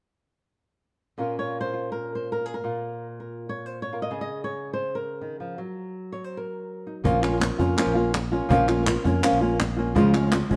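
Mournful and fiery, this flamenco excerpt opens at 1.2 seconds with an up-front, fingerpicked flamenco guitar carrying the melody, its finger squeak audible, before a second, very quiet guitar adds stabs at 7.0 seconds alongside a warm, amped fingered electric bass, followed by a woody cajon with faint snares sitting in the background at 7.1 seconds and crisp, close palmas hand claps at 7.2 seconds, all within the moderate reverb of a stone room.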